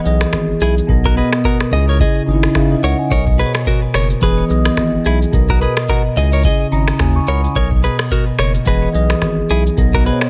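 Sunny and romantic, this afrobeats excerpt moves at 108 BPM in B major with a swung sixteenth-note feel. A bright, bell-like tine electric piano with phaser sits up front, adding a fill between 6.4 and 7.6 seconds. Beneath it, a thick, saturated sine sub bass holds the low end, while a booming, tape-toned analog drum machine with vintage 12-bit grit lays down deep kicks, finger snaps, rim clicks and shaker. A clean, compressed, picked electric guitar recorded direct joins at 0.6 seconds with a scooped riff through digital delay, and the whole blend sits in a digital ambience.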